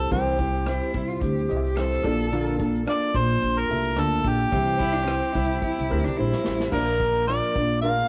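Acoustic pop at 109 BPM with a lightly swung, easy-going and sunny feel, this home cassette recording puts a clear, punchy harmonica melody up front over a full-bodied fingerpicked jumbo guitar, a soft, felt-muted upright piano in the background, woody pizzicato upright bass and a distant, roomy unplugged drum kit played with bundle sticks and dark cymbals, while a smooth bowed cello with vibrato adds a second line from 0.7 to 6.7 seconds, and a drum fill at 6.2 seconds leads into a brief new section, all set in light small-room reverb.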